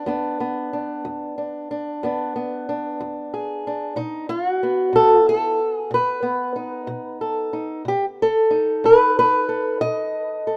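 A lone fingerpicked, ladder-braced acoustic guitar sits up front with a dark, woody, boxy tone and the sound of old strings, carrying this short cut from a longer acoustic country blues piece. The feel is laid-back and swaggering in a straight 12/8, moving from E7 to B7 at 4.0 seconds. Light reverb and a small-room ambience give it the rough character of a home demo.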